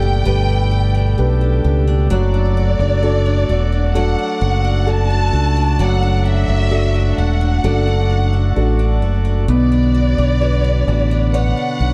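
Melancholic and longing, this pop ballad excerpt in straight 4/4 sets a lush, distant violin section carrying the melody with expressive vibrato over a concert grand piano with deep bass, sustained principal-chorus pipe organ chords with baroque voicing and chiff, bright picked steel-string acoustic guitar arpeggios with delay sitting in the background, and a round, direct fingered electric bass up front, within a small room ambience and a dark, warm production as the harmony moves from Gadd9 to D at 2.1 seconds and to Bmadd9 at 9.5 seconds.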